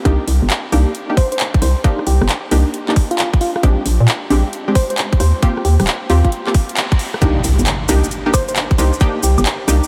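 UK garage in a two-step style, this moody, bouncy excerpt moves at 134 BPM in C minor with a 66% swing on the 16th notes, cycling through Cm9, Bb13 and Eb6 before returning to Cm9. A tight, up-front electronic kick and a hollow, knocking FM bass anchor the groove, while a layered garage kit adds handclaps, metallic hi-hats, rim clicks and woodblock. Punchy, detuned sawtooth and square-wave chord stabs with a filter pluck sit under chorus and analog delay, and from 1.2 seconds a round, keys-like FM lead with gentle vibrato picks out a melody through the same chorus and delay. After a band accent at 6.8 seconds, the drop arrives at 7.2 seconds, bringing grainy, close and dry maracas and a background electronic impact. A huge ambient reverb soaks the mix, giving it a dreamy, spacious haze.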